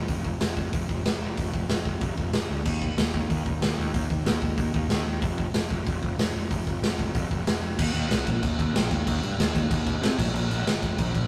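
A straight, driving four-beat pulse carries this rowdy, energetic punk rock fragment, cut from a longer piece. A fuzz-drenched picked electric bass sits up front with a dark, round, overdriven tone from the first moment. The raw garage drum kit comes in at 0.1 seconds with crash cymbal, hi-hat, punchy kick and a medium-tuned snare, its gritty, saturated sound filling a bright stone room that pumps around the hits, while the top end sounds rolled off. The overall recording has the rough feel of a rehearsal room, with tube saturation and little reverb, so the two parts land close and blunt. Around 7.8 seconds the music moves into a new section that runs through to the cut at 11.3 seconds.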